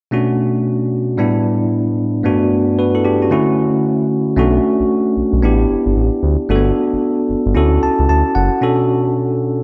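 The excerpt opens on a bell-like tine electric piano, bright and clean, laying out a bouncy, slick R&B groove in B minor at 113 BPM, with a swung sixteenth-note feel in 4/4. The piano cycles through Bm7, A7sus4, Gmaj7 and Dmaj7, sitting direct and up front as it carries the accompaniment across a span from low G2 up to A5. At 4.4 seconds a smooth synth bass joins in the low register, its sawtooth and square-wave tone mellow and sustained, with a fast attack and a touch of vibrato, placed up front beneath the keys. The electric piano plays a fill from 7.6 seconds, and the bass drops out at 8.5 seconds just before a brief new section returns to Bm7. A lush hall reverb bathes the sound, and the bright digital production has a distinctly 1980s sheen.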